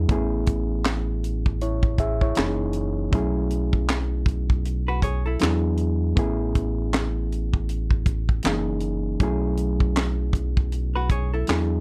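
Relaxed and warm, this short neo-soul and R&B excerpt sits at 79 BPM with a swung sixteenth-note feel, cycling through lush chords from Amaj7 through F#13 and B13sus4 to E7. A reedy, gritty electric piano pushed through a combo amp carries the accompaniment over a deep, round analog bass and a tight funk drum kit with a high-tuned snare, handclaps, hi-hat and kick, all sitting up front. A clean, picked hollow-body jazz guitar adds brief dark phrases at 4.9 and 11.0 seconds, and the dark production keeps reverb to a minimum.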